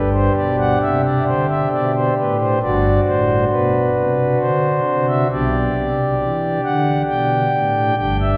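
A wet church reverb with a long 3.9-second decay surrounds a solo pipe organ, its principal stop sounding smooth and up front with a romantic voicing. This majestic, reverent chorale-style excerpt in G major moves at a rubato 67 BPM in 3/4, spanning G1 to G5 as it holds a G chord and shifts to G/B at 5.3 seconds. The fragment, cut from a longer piece, lasts 8.4 seconds.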